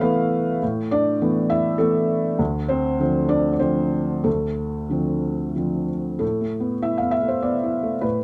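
A felt-muted upright piano opens alone on an Asus2 chord, its soft, mellow tone set up front by close, detailed microphones. This is neoclassical minimalist piano in A minor, moving in 3/4 at a rubato pace of roughly 90-102 BPM, with the instrument tuned to A4 = 442 Hz. The harmony shifts to Dm7 at 2.4 seconds, and the piano ranges from D2 up to F5, giving the melancholic, intimate mood both depth and a gentle upper voice. A new passage begins at 6.2 seconds with a return to Asus2, and the short cut from a longer piece ends at 8.2 seconds. Light reverb adds a touch of natural space around the muted, close-miked sound.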